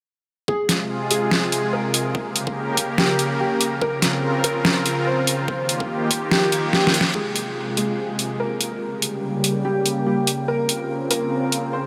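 A half-time groove with swung sixteenths drives this heavy wobble dubstep excerpt, where overdriven electronic drums set an aggressive, menacing tone: a deep snare and bright hi-hats sit up front, while a layered, knocking kick pounds beneath them until 6.2 seconds. A lush supersaw pad of detuned sawtooth voices holds sustained chords with a slow attack and long release, pumping against the sidechain through a low-pass filter. Over it, a dark baby grand piano carries the melody with a mellow, worn and boxy tone, its intimate action noise audible and its sound thickened by analog chorus and delay. A faint reverse cymbal rises in the background at 6.5 seconds, joined by a drum fill at 6.7 seconds, leading into a build-up from 7.1 seconds, where a filter sweep moves across the supersaw while the minor-key progression, built around diminished and added-ninth colours, repeats. The whole mix is soaked in a huge ambient reverb, giving the menace a dreamy, cavernous haze.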